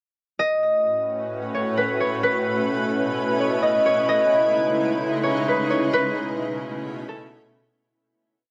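Set at 130 BPM in 4/4 with a half-time feel, this short atmospheric cloud-rap hip hop piece floats in a dreamy mood. A concert harp carries the melody from 0.4 to 8.5 seconds, its bright, ringing, fingerpicked notes sitting up front in a sparse looping phrase that repeats like a sampled loop, softened by a low-pass filter and trailed by delay. Beneath it, a shimmering ambient pad enters at 0.8 seconds with slow-attack sustained chords, its ethereal, granular tone lifted by an octave-up shimmer and thickened with chorus and its own reverb. The harmony moves from A6 through B7sus4 to C#m9 and back to B7sus4, and from 0.4 to 7.8 seconds the piece unfolds as a breakdown. A huge ambient reverb with a long tail bathes the sound, and a fade-out begins at 5.9 seconds as the pad trails off, leaving the harp to ring on briefly.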